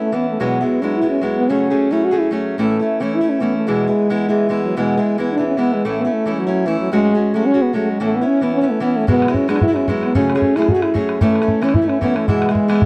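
A dry, close, 1970s-style studio sound with small room ambience frames this bright, cheerful Celtic reel excerpt at 222 BPM in E major, where a mellow French horn carries the melody up front with light vibrato and a smooth classical top over a boxy, fingerpicked acoustic archtop guitar, and an open, boomy bodhran joins at 9.1 seconds as the chords cycle through Eadd9, F#madd9, A and E.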